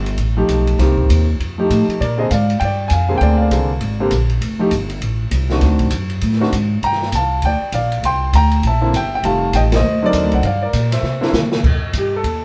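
A sophisticated, swinging jazz piano trio excerpt in F mixolydian at a brisk 199 BPM, with a clear, intimate grand piano carrying the melody up front, its action noise audible, over a woody pizzicato upright bass on steel strings and a dark, smooth drum kit with a boomy kick and dark cymbals. The band plays live together in one room with moderate studio reverb, moving through chords like F9, Bb9, D7b9 and Gm7. A band accent hits at 9.7 seconds, and a drum fill from 11.0 seconds leads back to F9 as the fragment, cut from a longer piece, ends.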